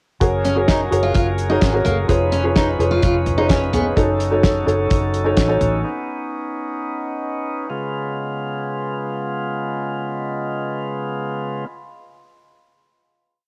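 Uplifting and warm, this short piano-driven pop piece moves at 128 BPM in a straight 4/4, centred on D-flat mixolydian and tuned slightly sharp to A4 = 441 Hz. A soft, felt-muted upright piano sits up front with syncopated, closely voiced chords and short fills, while a bright, reedy tonewheel organ holds a lush chorused pad beneath it. A damped 70s drum kit stomps out a four-on-the-floor beat with a fat snare and tight kick. Alongside it play a round, foam-muted fingered electric bass and a full-bodied picked steel-string acoustic guitar that rings a repeated figure until about 3.8 s. The other parts drop out near 5.9 s, leaving the organ to carry the passage into a final Db7 chord that rings to 11.7 s. Cassette tape colours the piano, organ, guitar and drums, and the home recording carries light reverb and a small room ambience.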